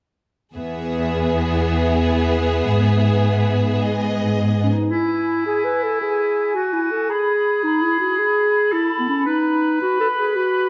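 A rich, up-front cello section anchors this heroic, soaring cinematic excerpt in E major at 111 BPM, joined by lush bowed violins with vibrato carrying the melody and a warm, soft-attack second line, and by a clear viola section, all playing from 0.6 to 4.7 seconds over E and G#m chords. A mellow solo clarinet, also up front, then takes over from 4.6 seconds, with a clear, distant oboe and an airy, distant flute ensemble entering at 4.9 seconds as the harmony moves through E and G#m to B/D#. A moderate scoring-stage reverb gives the short passage a spacious, polished sound.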